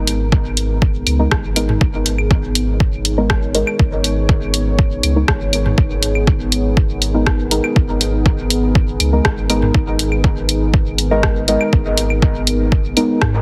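An overdriven, up-front electronic kick drives this deep, meditative dub techno excerpt at 121 BPM in G# minor, alongside a punchy analog drum machine's dub-echoed hi-hat and rim click, background claves and toms, a clean sine sub bass and a detuned, gritty ambient pad pumping under the sidechain on a G#madd9 chord, while a soft, nasal chord stab with chorus, phaser and dub echo enters at 1.2 seconds, all set in a heavily compressed, radio-like digital ambience.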